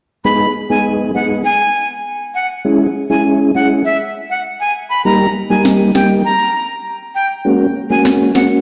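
Hypnotic and sultry, this dancehall cut from a longer piece moves at 100 BPM in G# minor, where a mellow, round tonewheel organ, lightly overdriven and spun through a fast rotary speaker, carries the accompaniment through G#m, C#m, D# and F#add9. Up front over it, a breathy, bright jazz flute with a reedy, close-miked straight tone sings the melody between E5 and B5, trailed by digital delay. At 5.7 seconds a produced electronic snare with a sharp crack arrives alongside finger snaps and rim click, all set in a lush hall reverb and the stony echo of a big sound system in a bare room.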